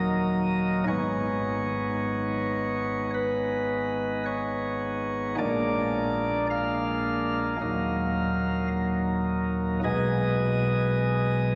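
Unfolding in a free, rubato 4/4, this grave, dark chorale for solo chamber organ moves through Ebm, Abm and Bb7 before settling on Abm/Cb at 9.8 seconds, all within a brief fragment of a longer piece. The organ's sparkling flute stops sit up front with a light chamber voicing and a crisp chiff, ranging from a deep Eb1 up to F5. A long cathedral reverb of 4.3 seconds wraps the sound in a wet, resonant space.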